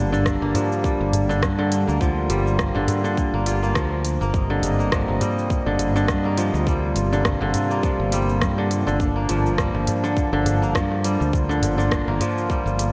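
Organic downtempo in G minor pentatonic at 103 BPM with a gently swung 4/4 feel, this mystical excerpt drifts over Gm, Cm7/G and Bb/G as a mellow, ringing kora plays up-front fingerpicked arpeggios, a reedy, breathing harmonium pumps beneath with sidechain pulse and diffuse ambient delay, a direct fretless electric bass anchors the low end, a tight, tape-warm electronic kick and smooth-hatted kit with rim click and shaker keep time, and a crisp, very quiet metal-shell darbuka adds color, all within a dreamy, reverb-soaked hall.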